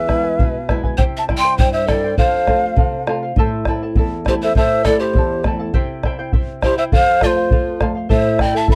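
A straight, earthy 2/4 pulse from a deep, dark bombo drives this festive Andean folk fragment, where a mellow large quena carries the expressive, vibrato-laden melody up front, a breathy pan flute with audible chiff adds a second line, and a fingerpicked charango with shimmering double strings joins a flamenco guitar, its finger squeaks caught in a dry, close 1970s-style studio sound with light reverb.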